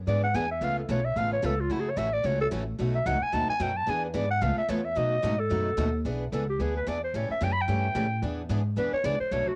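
A raspy, growling clarinet solos up front with light vibrato in this playful, swinging jazz manouche excerpt at 221 BPM in E mixolydian, carried by a woody, thumpy pizzicato upright bass on gut strings, a boxy, picked parlour steel-string guitar, and a bright, fresh-stringed swing guitar tucked in the background, with the clarinet and both guitars colored by cassette tape inside a small-room home recording.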